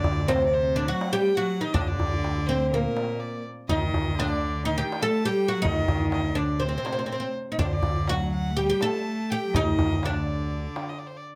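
Soulful and melancholic, this short Arabic maqam ensemble passage in D maqam hijaz moves at 123 BPM in a straight 4/4, cut from a longer piece. A plectrum-plucked oud carries the melody up front, its woody, double-string voice sitting between Bb3 and A4. A bright violin with light vibrato and a cello with a gut-string, period-style tone both play second lines above and below it, the violin airy and nasal, the cello reedy and boxy. A punchy fretless electric bass holds a low D2, direct and amped, and stops at 10.7 seconds, just ahead of the others. A large clay-shell darbuka with a natural skin sounds distant, as if in a big room, and the ensemble sits in light reverb.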